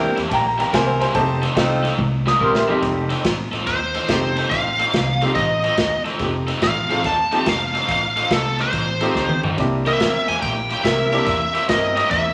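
An electric blues shuffle with a swaggering, laid-back swing, cut from a longer piece, where a worn concert grand piano, woody pizzicato upright bass, bright overdriven garage guitar riff and airy big-band drums with a punchy kick carry the groove, mellow saxophone stabs with light vibrato sound at the start and return at 9.9 seconds, and a biting, up-front overdriven lead guitar takes the melody from 3.7 seconds, all set in a wet studio reverb with vinyl crackle.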